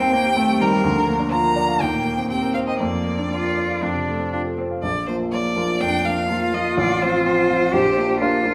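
Graceful and lively, this brief passage, cut from a longer piece, is a quick classical-period movement for piano trio, played with uneven beats and a flexible, rubato pulse. A single bowed violin carries the melody, its tone rich, smooth and even with vibrato, sounding up front yet somehow distant at once. Beneath it a lone bowed cello sings a second line, focused and smooth on top, its own vibrato adding body. The baby grand piano supplies the accompaniment in a dark, mellow voice, sitting up front in the blend. All three play from the opening moment, and the music moves from its first section into a second at 4.8 seconds, settling onto a home chord near the close. A recital hall's wet reverb surrounds the trio, giving the sound a spacious, resonant glow.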